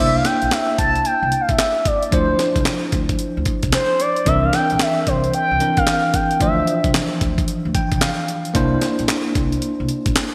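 A bright 1980s-style digital production bathed in lush hall reverb frames this confident, slick new jack swing R&B excerpt at 112 BPM, its sixteenths swung. A smooth, up-front sawtooth synth lead with chorus, delay and vibrato carries the melody until 6.9 seconds, while a bell-like tine electric piano alternates C9 and Dm9 chords and plays a fill at 7.5 seconds. A woody pizzicato upright bass anchors the low end, and from 0.2 seconds a gritty, compressed sampler-style breakbeat kit punches in with thumpy kick, snare, hi-hat and handclaps under gated reverb.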